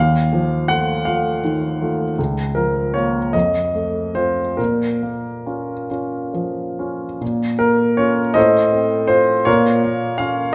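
A solo grand piano opens straight away on a dominant-seventh chord, setting a brooding, passionate romantic character piece in 6/8 with freely bending rubato. The instrument sounds clear and polished, placed up front and intimate enough that the noise of its action is audible, while a wet recital-hall reverb lets each chord hang in the air. The harmony moves between the dominant seventh and its minor tonic, the bass voicings reaching down to Db2 and the upper line rising as high as Gb5. At 7.2 seconds the opening section begins again, returning to the same dark alternation before settling on the minor chord at 9.5 seconds. This brief excerpt of a longer piece closes at 10.5 seconds, still heavy with yearning.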